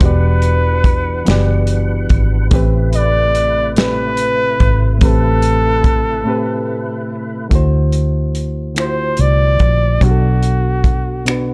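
A breathy, close-miked flugelhorn with vibrato carries the melody up front in this slow, sultry six-eight R&B excerpt, played in a jazz style over a reedy, clean electric piano. A foam-muted, round and punchy electric bass and a dark, small-room soul drum kit with finger snaps, hi-hat, tight kick and snare sit up front in a dry, late-night mix. Meanwhile, a fat, lightly overdriven tonewheel organ with key click, chorus vibrato and slow rotary speaker holds sustained chords until 7.5 seconds, through a break that starts at 6.3 seconds.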